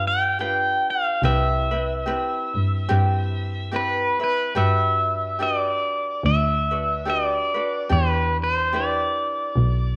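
Sunny and relaxed, this lightly swung Hawaiian excerpt drifts along at an easy, unhurried pace in four. An up-front electric pedal steel guitar carries the melody with a bright, twangy, compressed tone, played with fingerpicks and sliding notes shaped by volume swells. Beneath it, an acoustic ukulele adds light fingerpicked accompaniment, sitting lower in the mix. A bowed double bass, also up front, supplies a dark, woody bass line with a smooth top, colored by vibrato and portamento. Moving through seventh chords, the harmony settles into a new tonal center at 4.6 s, and the whole recording is bathed in a wet spring reverb with a studio ambience.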